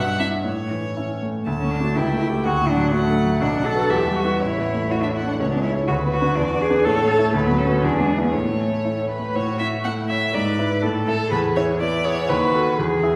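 A single bowed violin carries the melody in this cheerful, lively classical-period movement for piano trio, its focused, vibrato-laden tone sitting a little distant in the sound. A clear, intimate baby grand piano plays the accompaniment up front, with its action noise audible beneath its natural sound, while a single cello enters at 1.5 s with a smooth, even second line that adds a rich, vibrato-warmed depth. The music moves at a quick 122 BPM in a straight 2/4, settling into A major from 5.4 s as the harmony turns through chords such as D, Bm, E7 and C#m before a contrasting passage near the close. The violin stops at 12.8 s, just before the piano and cello finish together. A wet recital-hall reverb gives the trio the spacious glow of a church or concert hall, and the clip is cut from a longer piece.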